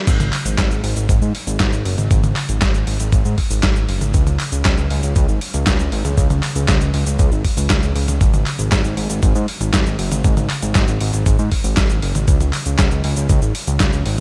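Italo disco with a sunny, romantic mood, this short excerpt cut from a longer piece pairs a fat, detuned sawtooth bass, thick and up front with tube saturation, a wave-folded edge and a filter sweep, against a gritty, compressed sampler-style soul drum kit of snare, hi-hat, handclaps, cabasa, toms and crash cymbal. An overdriven electronic kick adds a thumpy punch, and both drum parts carry studio reverb. Light reverb and digital ambience frame the single section, with the kick dropping out at 13.9 seconds, just before the bass and kit end at 14.2 seconds.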